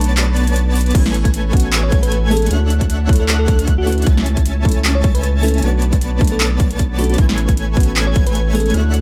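Future bass with a euphoric, playful mood and a swung, half-time feel, this passage is cut from a longer piece and opens on a short break before the electronic kick drum enters at 0.9 seconds. That kick is hard-clipped, overdriven and up front, alongside a layered pop drum kit with a fat snare, metallic hats, handclaps and crash cymbal, overdriven and re-recorded in a small room. A deep, thick, saturated sine sub bass sits forward beneath a huge, detuned supersaw riff that sounds dense and compressed, while a soft, felt-muted upright piano adds mellow, intimate accompaniment with audible action noise and a digital delay. Floating in the background, an airy, dreamy lead plays high arpeggios with chorus, and from 1.8 seconds a sparkling, bell-like FM electric piano carries the melody with a warbling, vintage character. Sidechain pumping runs through the piano, lead, supersaw, sub bass and electric piano, all set in a digital ambience over lush chords such as Bm9, Amaj7 and Dmaj7.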